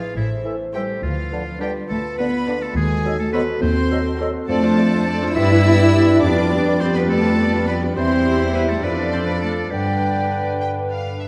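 A playful, whimsical cinematic film cue in 6/8 at 69 BPM, this quirky, mischievous fragment sets a soft-attack, sul tasto violin section on the melody above a close violin section second line, a bright oboe, an airy distant flute and a very quiet clarinet, while violas and a bassoon accompany in the background, mellow French horns sustain chords, a ringing harp plays arpeggios and a prominent dark cello section joins the double basses on the bass, the harmony moving from Am through diminished chords to G inside a wet scoring stage reverb.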